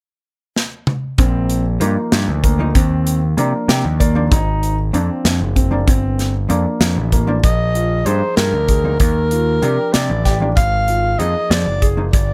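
Driving and intricate, this progressive instrumental in 5/8 opens with a drum fill on a punchy, polished studio kit, then a round, overdriven picked electric bass sits up front while a mellow grand piano with audible action noise plays arpeggios and a clean, compressed hollow-body jazz guitar accompanies with a fill near 3.4 seconds, both bathed in plate reverb, before a breathy, whispered soprano saxophone with light vibrato takes the melody at 7.4 seconds.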